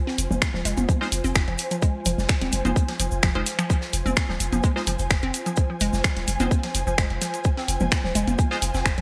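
Minimal techno at 128 BPM in 4/4, this sparse, cool excerpt sits on a single F minor chord, with a tight, up-front electronic kick anchoring the straight pulse from 0.4 seconds. A deep, punchy sine sub bass with a pitch-drop attack and tube saturation pumps with sidechain compression, joined by a hollow, nasal square-wave pluck riff, bouncy and detuned with chorus and digital delay, plus an ethereal, airy pad that drifts in on a slow attack with ensemble chorus and its own reverb. Up front, a layered electronic garage kit adds finger snaps and hi-hat under gated reverb. Further back sit a big acoustic rock kit with a medium-tuned snare, hi-hat and shaker, high-passed and gated; a grainy cabasa; and electronic toms and congas with delay and gated reverb. From 1.0 seconds, crisp, digital wavetable chord stabs with delay flicker in the background, and the whole mix has a bright 1980s-style digital sheen in a small, lightly reverberant room.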